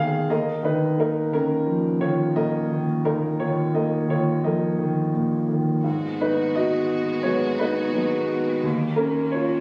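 Heartbroken and reflective, this acoustic folk-pop ballad fragment opens on a boxy, up-front grand piano carrying the melody over an Ebsus2 chord. At 5.8 seconds a chamber string section enters quietly behind it with bowed, sustained chords that have a light vibrato, a biting edge and a smooth top, as the harmony moves to Abm7 and then back to Ebsus2. The recording has a phone-in-the-room intimacy, set in a moderate studio reverb.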